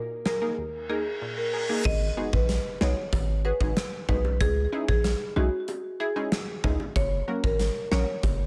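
The recording carries a clear sense of studio ambience, and this short cut from a longer piece is a tough, bouncy dancehall groove at 94 BPM in 4/4, set in G# minor. A punchy chord stab built from detuned sawtooth and pulse waves opens on D#sus4, its bright, plucky attack shaped by chorus, a low-pass filter and sidechain pumping. From 0.3 seconds a close-miked, dry marimba played with medium hard mallets carries the melody through tape echo, while a polished, up-front gated 80s drum kit drives the beat with a punchy kick, medium-tuned snare, rim clicks, hi-hat and crash, all set in an airy, bright stone room. An electronic reverse cymbal rises into a brief silent gap and lands on an impact at 1.9 seconds, where a heavy, sine-based 808-style bass with a noise layer hits hard up front and tight, high-tuned vintage bongos join in the background. The chords then move through G#m7, C#madd9 and F#.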